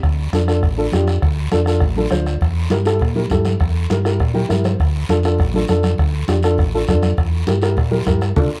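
Lightly reverberant, this fiery, passionate Latin cumbia fragment puts a round, amped fingered electric bass and a mellow, woody upright piano up front, the piano entering at 0.3 seconds and adding a fill from 4.2 to 4.8 seconds, over a soft-beater bombo, a raspy vintage guiro and bright, hard-handed congas set in the background, before the band hits an accent at 8.4 seconds.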